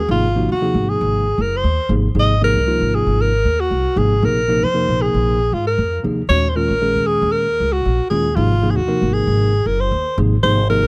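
A dry, close 1970s-style studio sound frames this nocturnal, driving electric jazz fusion excerpt in a light sixteenth-note swing, where a breathy, subtoned alto saxophone with light vibrato and scooped notes carries the melody up front over a woody, dark pizzicato upright bass and a worn, slightly out-of-tune tine electric piano with light overdrive, moving through Ab13, Fm7/Ab, Bbsus2, Eb9sus4 and Ab69 chords.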